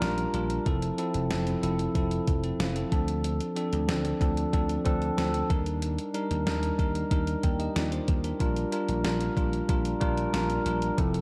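A bell-like tine electric piano carries the accompaniment in this nostalgic, dramatic slice of 1980s-style pop, its bright, clean tone heard up front through built-in speakers and slipping in a short fill between 2.3 and 3.2 seconds. Underneath, a vintage slap bass sits round and punchy with an amped character, while a clean 12-bit digital drum machine supplies a thumpy kick, fat snare and hi-hat with a sampler-style, tape-warm edge, re-recorded in a small room and placed up front. At 93 BPM in a straight 4/4, the three parts play together across the full 11.2 seconds, cut from a longer piece. The chords move from Bb6 through Fmaj7, Dm7 and Ebmaj7 before returning to Bb6, giving the passage its wistful pull. A moderate, lush hall reverb wraps the dark production in a sense of space.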